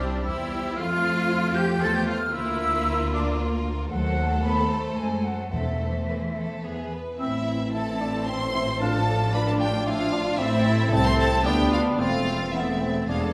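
A rich, vibrato-laden violin section carries the melody of this stormy, dramatic classical-period movement in A minor, with a bright flute section above, a second violin line, a background viola section and a bowed double bass and lush cello section beneath, all moving at a quick 113 BPM in 3/4 with a rubato feel. Soft-mallet timpani come in with a round, dry sound at 5.5 seconds. At 7.2 seconds a clear clarinet and a dark, distant French horn section holding sustained chords join the music, followed at 7.7 seconds by a mellow bassoon, all set in the reverberant air of a recital hall.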